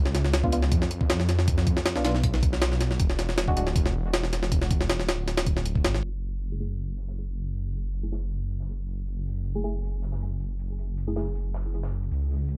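Drum and bass with a jungle edge at 158 BPM in F# minor, this dark, nostalgic excerpt pairs a thick, menacing detuned saw bass with a gritty, pitched-up sampler drum kit that hands over at 6.0 seconds to a crunchy, saturated breakbeat kit with a rolled-off top, while deep, nasal chord stabs drenched in chorus and dub echo drift over C#7b9, E7 and F#m9 changes, a filter sweep moves across them in the second half, and vinyl crackle colours the studio reverb.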